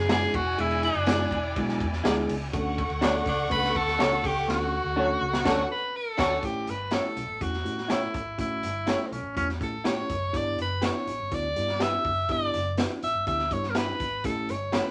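Passionate and driving, this excerpt of uptempo 1960s-style soul moves at 123 BPM in a straight 4/4. A bright, up-front tenor saxophone carries the melody throughout, its vibrato and scooped notes giving it a jazz-style solo voice. A lush bowed string section plays a second line alongside it with expressive vibrato before stopping at 6.3 seconds. The harmony comes from a mellow, clean tine electric piano and stabs from a dark, slightly broken-up electric guitar through a small old amp, while a foam-muted fingered bass adds a round, punchy low end. The raw garage drum kit has a high-tuned snare, a punchy kick and a gritty, saturated character with a rolled-off top. It plays a fill from 4.5 seconds, joined by a band accent from 5.5 seconds, as the music heads into its second section at 6.4 seconds. Moderate studio reverb and a layer of vinyl crackle give the whole a vintage patina as the chords shift from E7 and Dmaj7 to A7 and G6.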